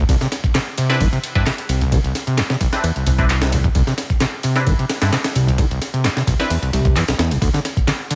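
A squelchy, distorted acid bass riff leads this energetic, funky breakbeat excerpt, its resonant sawtooth tone carrying a filter sweep and a touch of chorus up front. Beneath it, a fat analog bass adds thick, tube-saturated weight, mellow and sustained, until it stops at 7.5 seconds. The main drums come from a compressed, pitched-up sampler-style breakbeat kit with a thumpy kick, medium-tuned snare, hi-hat and ride cymbal, gritty and tape-warm near the front. Meanwhile, a punchy analog drum machine adds handclaps and hi-hat from the background, re-recorded in a small room. From 0.9 seconds, a nasal, band-passed chord stab with detuned sawtooth bite cuts through, colored by phaser and dub echo, until it drops out at 6.5 seconds. A layer of vinyl crackle sits over the groove as digital ambience.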